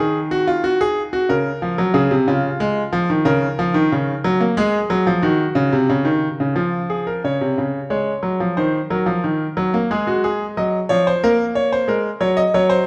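A bright, up-front grand piano with short sustain rings in a moderate recital-hall reverb, its tone natural and brilliant. This solemn, serious baroque-style two-part invention in F# major moves at a steady 91 BPM in straight 4/4, the solo piano spanning B#2 to D#5. A second section begins at 7.2 seconds and turns toward darker diminished and minor chords before this cut from a longer piece closes at 12.9 seconds.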